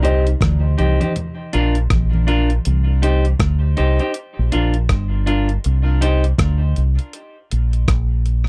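A meditative, heavy dub reggae excerpt opens with a gritty, compressed sampler-style kit of thumpy kick, hi-hat and rim click, a dark, round fingered bass up front, picked clean guitar with tape echo, and thick-skinned congas with tape echo in the background that drop out at 2.3 seconds, while the guitar rocks between Cm and Bb until 6.2 seconds in a dry, close 1970s-style studio sound.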